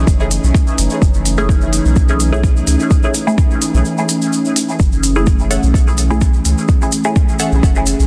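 Dub techno at 127 BPM in F# dorian, meditative and hypnotic, resting on a single F#m7 as a warbling, lo-fi pad with chorus and sidechain pumping hovers over a round, soft sub bass, a deep kick up front, smooth background hi-hats and a grainy egg shaker, while a muted, detuned chord stab with phaser and dub echo enters at 1.4 seconds and a crisp, bright wavetable stab joins at 5.5 seconds in this short cut from a longer piece.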